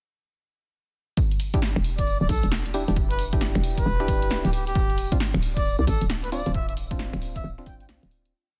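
A dense, heavily limited modern mix in digital ambience carries this late-night, skippy two-step UK garage groove at 134 BPM in E phrygian, where an up-front electronic two-step kick and a punchy analog drum machine's snaps, swung hats and snare, both re-recorded in a large room, sit under jingly hand-played tambourine sixteenths, a hollow, bouncy FM bass line, dark syncopated organ-like stabs with chorus and tape echo over Em7 and Dm7, and a veiled, breathy bucket-muted trumpet playing short phrases with vibrato and tape echo from 2.0 s to 7.9 s, carrying on through the fade-out that begins at 6.0 s.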